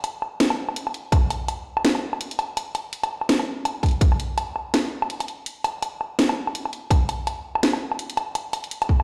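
The rhythm rides a half-time drum and bass groove at 166 BPM in 4/4, with a 58% swing on the sixteenths. The mood is heavy and cinematic, and this short section is cut from a longer piece. A layered, produced electronic drum kit runs from start to finish, up front, with hi-hat, a cracking snare and woodblock. An electronic kick drum, hard-clipped and tape-warm, also sits up front and is the louder of the two parts. It lands briefly at 1.1 and 3.8 seconds, then holds from 6.9 seconds to the end. Both parts carry a small room reverb, and the whole mix sounds as if played on a big sound system in a bare stone room with a moderate digital reverb.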